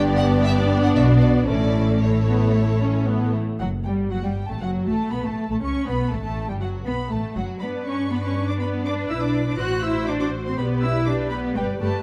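This spirited, lively passage from a quick classical-period movement for string orchestra opens with the full low and middle strings at once: dark, woody double basses sitting up front, rich cellos beside them on the bass line, and violas filling in the accompaniment. A second violin section joins from the start too, tucked in the background with an even, bowed sound. The melody violins enter at 0.2 s, their tone focused with a smooth top and vibrato, carrying the tune within the lush ensemble. The 4/4 pulse breathes with a rubato feel, and at 3.6 s the music moves into a new section where the harmony grows more colorful, passing through extended and diminished chords. Close, detailed microphones and light reverb give the warm string body a clear, intimate presence.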